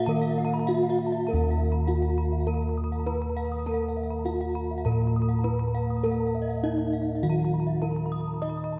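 A straight 4/4 pulse at 101 BPM drives this shimmering, brilliant stretch of Balinese gamelan, cut from a longer piece, where dark, round bossed gongs sit up front on the bass while a wooden-mallet bronze metallophone carries the melody with the beating shimmer of paired tuning. Beneath it, another wooden-mallet metallophone plays accompaniment down to a slightly flat Gb3, and above, a bright, dry, close-miked horn-mallet metallophone spins arpeggios, joined at 0.2 s by a second, background arpeggio line. A moderate concert hall reverb lets the ringing metal bloom.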